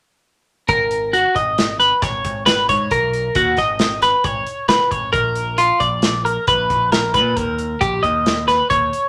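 Set in an odd 5/4 metre at 135 BPM with a straight feel, this math rock and midwest emo passage in G# minor feels intricate and restless from the first bar. At 0.7 s the full band enters together. A clean, compressed twelve-string electric guitar sits up front, its bright arpeggios ringing between E#4 and D#5 as the harmony moves from G#m9 to A# at 5.1 s and on to D#7. Beneath it, a picked electric bass adds a growling, overdriven edge from G#1 to A#2. It sits lower in the mix than the acoustic studio drum kit, whose punchy kick, medium-tuned snare and hi-hat drive the part. A moderate studio reverb gives the sound some air before the passage, cut from a longer piece, ends around 9.1 s.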